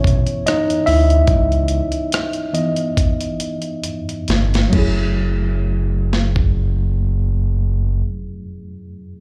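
A dark, sawtooth-edged synth bass glides up front with portamento and vibrato through this smooth, sultry neo-soul cut, carried by a gentle swing as the harmony moves from C#m9 to F#m9 at 4.7 seconds. A worn, slightly out-of-tune tine electric piano with slapback echo takes a solo over the opening stretch while the tempo slows, and a gritty, overdriven sampler-style drum kit with a thumpy kick, rim clicks, hi-hat and crash plays a fill from 3.0 seconds before falling away at 6.5 seconds. The sound comes from a live gig heard through the venue's PA, with a light club reverb around it.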